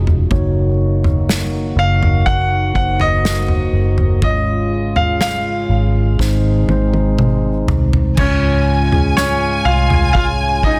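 A mellow tine electric piano, a softly vibrato-tinged French horn section holding sustained chords and a round, foam-muted vintage bass open this hopeful, heartfelt pop ballad in Db major at a slow 61 BPM, with an airy acoustic kit played with bundle sticks entering just after. At 1.8 seconds a brilliant, up-front concert grand piano takes the melody, and a drum fill leads to a new section at 8.2 seconds, where the harmony settles on Dbmaj7 and a lush, bowed violin section adds a high second line. The small room gives the parts a close, intimate feel, framed by a dense, heavily limited modern master in this short excerpt from a longer piece.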